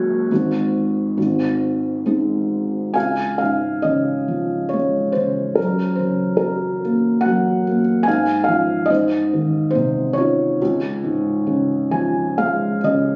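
Classical solo piano in a peaceful, tender mood, this lyrical excerpt moves in an unhurried three with a free, rubato feel, heard on a felt-muted upright piano that sounds hushed and dark, with thick felt and audible action noise close up. The piano ranges from deep bass to high treble over gentle chords, shifting from its opening phrase into a second section at 3.0 seconds. It closes with a brief fill from 11.5 seconds, all set in a moderate recital-hall reverb that gives the intimate tone a soft halo.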